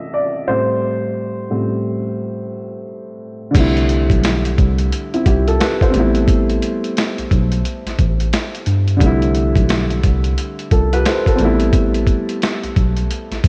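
A swung sixteenth-note feel in 4/4 carries this cosy, nostalgic lo-fi hip hop fragment, cut from a longer piece. A dark, woody upright piano opens alone, its smooth, vintage tone softened by a low-pass filter and a filter sweep across those first seconds as it settles on an Am7 chord. At 3.5 seconds a sampler-style drum kit arrives up front, compressed and muffled with a thumpy kick, a medium-tuned snare, hi-hat and crash cymbal, all carrying a tape-warm character as if re-recorded in a small room. Just after, a mellow tine electric piano takes the bass line, worn and slightly out of tune yet clean and direct. The harmony drifts gently between C6 and Am9, and light reverb with a digital ambience gives the whole a hazy, intimate glow.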